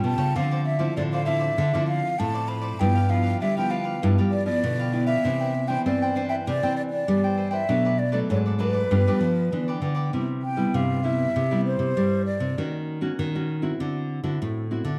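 A dark, reverberant production in a large studio room frames this festive, joyful samba excerpt at 98 BPM with a straight feel. A breathy, hollow concert flute carries the melody up front with a soft attack, over a crisp picked cavaquinho and two full-bodied, fingerpicked nylon-string guitars, one in accompaniment and one holding the bass line. At 10.1 s the cavaquinho stops and the flute takes a solo, the flute ending at 12.6 s while the guitars continue.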